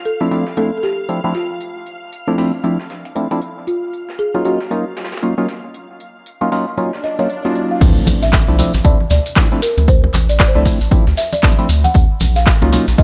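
A woody, soft-mallet folk marimba carries the melody from the start of this smooth, warm deep house excerpt, its dry, rustic tone touched by a digital delay. Up front, a hollow, organ-like percussive stab adds chorus, phaser, cassette-tape colour, dub echo and sidechain pumping, while a shimmering vintage string machine holds a high, sustained texture until 7.8 seconds. In the background, a gritty, overdriven breakbeat sampler-style kit of hi-hat, snare and tambourine sways with a swung sixteenth-note feel, and an electronic swell and impact mark the turn. At 7.8 seconds the drop arrives: a punchy, tape-warm electronic kick sits up front, a round, deep analog bass pumps beneath it, and an analog drum machine adds crash, handclaps and hi-hat. Bright, close congas and grainy maracas fill out the back of the mix as the harmony moves between Dm9 and Ebm9 under a light reverb.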